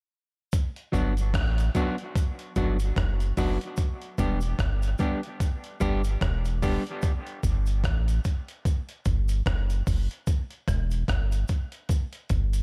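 Meditative and hypnotic, this dub reggae excerpt in E minor moves at 74 BPM in 4/4, with a 16th-note swing that gives it a loping sway. A gritty, compressed breakbeat sampler-style drum kit sits up front, its thumpy kick, hi-hat and rim click carrying a small-room, re-recorded character from 0.5 seconds onward. A soft, round sub bass enters at 0.9 seconds and holds down the low end between E1 and A1, its fast attack and sustained tone giving the groove a deep cushion. Alongside it, a dark, slightly broken-up electric guitar played with the fingers adds tremolo-laced, echo-drenched accompaniment until 6.8 seconds. Far back in the mix, a distant cabasa with an egg-shaker and group-handclap quality trails dub echo through a large-room space. The harmony drifts from Gmaj7 to Em7, F#m and Em, and the dry, echo-heavy mix keeps the focus on repeating delays rather than reverb.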